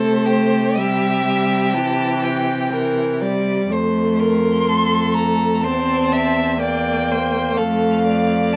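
A distant, expressive first violin sings the melody with vibrato and portamento over a focused, smooth-topped second violin placed up front, a viola that is likewise distant with portamento, and an even cello bass, all four bowed by single players with vibrato in this lyrical, slow romantic string quartet movement at 62 BPM in 4/4 with rubato, moving through C, F, C7/E and back to F across 8.6 seconds cut from a longer piece in a moderate studio reverb.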